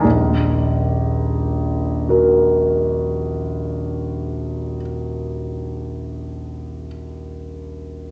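Romantic classical nocturne for solo piano in E-flat minor, a wistful, yearning 8.1-second fragment of a longer piece, flowing in a slow, rubato 12/8 at about 27-30 dotted-quarter beats per minute, where a vintage-toned concert grand sits up front with deep bass, smooth tone and long sustain, resting on an E-flat minor chord and spanning from low Eb1 up to Bb4, wrapped in the wet reverb of a scoring stage and tuned slightly high to A4 = 441 Hz.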